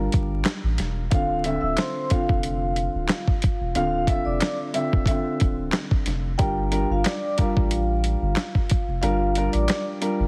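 A dark, woody upright piano and a round, deep dub sub bass open this reflective yet tough boom-bap hip-hop excerpt, joined almost at once by a gritty, sampler-style drum kit with a thumpy kick, medium-tuned snare, hi-hat and handclaps, all riding a light swing. From 1.1 seconds a soft-mallet vibraphone carries the melody with a metallic, ringing shimmer, slow motor vibrato and analog delay, moving over Gm7 and Dm9 harmony before the kick drops out at 9.0 seconds. The whole mix sits in studio reverb with a heavily compressed, radio-like sound and a layer of vinyl crackle.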